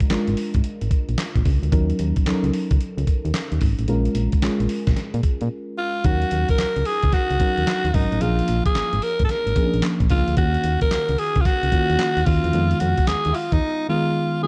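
A mellow FM electric piano with chorus and a dusty, sampler-style drum kit of thumpy kick, fat snare, hi-hat and handclaps open this slick, confident new jack swing excerpt in Eb minor at 111 BPM with swung 16ths, soon joined by a punchy, round FM bass, and after a brief break at 5.5 seconds a breathy, raspy alto saxophone with digital delay takes the up-front melody from 5.8 seconds, set in a dark production with light reverb.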